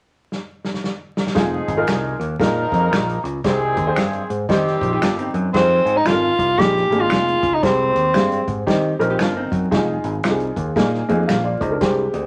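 Passionate and driving, this swung 1960s-style soul excerpt opens with a drum fill on a punchy small-room acoustic kit, then a woody, slightly detuned upright piano, a growly picked electric bass and a tight horn section with octave doubling arrive at about 1.3 seconds, joined by close, dry finger snaps in the background, brief clean hollow-body archtop guitar riffs, and an intimate, breathy tenor saxophone melody with scooped notes from 5.5 seconds, set in moderate studio reverb along with a layer of vinyl crackle.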